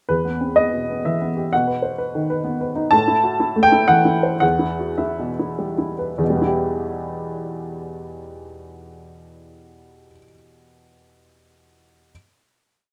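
A solo upright piano opens at 0.1 s with a woody, slightly detuned tone, playing a single-line melody over rocking broken chords in a rubato 3/4 at 97-130 BPM. This is a short, reflective and melancholic neoclassical minimalist piece in E harmonic minor, moving through E5, B, Am and Em and slowing from 2.2 s to 6.2 s. A final chord arrives at 6.2 s; the piano sits up front and present with a short sustain, framed by moderate studio reverb.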